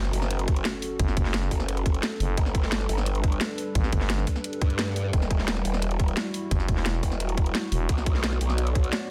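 A dense, heavily limited modern master in a digital ambience frames this tense, futuristic excerpt of dark technical drum and bass at 174 BPM in F# phrygian, moving through F#m, G, Emadd9 and Bm. An electronic impact sits in the background for the opening second, and a tight, overdriven kick enters up front at 0.5 s, alongside a layered kit of cracking snare and bright hats with studio reverb. A saturated, wobbling growl bass with a formant filter and chorus pumps to the sidechain beneath a moody, detuned, wave-folded analog pad, while a thick, sine-based FM bass snarls from 1.0 s to 4.3 s and returns briefly near the end.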